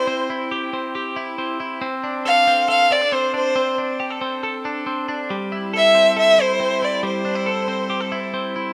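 A rich, bowed solo violin with vibrato opens together with picked twelve-string electric guitar arpeggios, a bright, nostalgic indie pop fragment in F major at 138 BPM in a straight 4/4, tuned to A4 = 441 Hz. The violin sits up front with a focused, slightly boxy tone, carrying the melody between C5 and F5. The clean, twangy, compressed guitar has spring reverb and moves through C, a rootless F6 and Am7. The violin stops at 8.3 seconds, and the guitar plays on until 8.7 seconds in a rough home demo mix with light small-room reverb.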